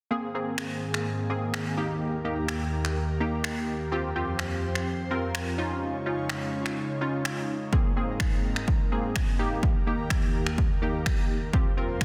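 A punchy, overdriven house drum kit sits up front from 0.6 seconds, its kick and finger snaps carrying a large-room sheen and soft clipping on the snare, with the hi-hats dropping out between 5.8 and 7.7 seconds. This upbeat, summery dance-pop cut moves at 126 BPM in a straight 4/4 in Ab major, built over a cycling Abadd9, Eb, Fsus2, Dbadd9 progression. A funky, detuned sawtooth-and-square polysynth comps with ring-modulated, plucky attacks, while an airy, breathy pad holds long chords beneath, both with chorus and sidechain pumping, under light reverb and a dense, heavily limited master.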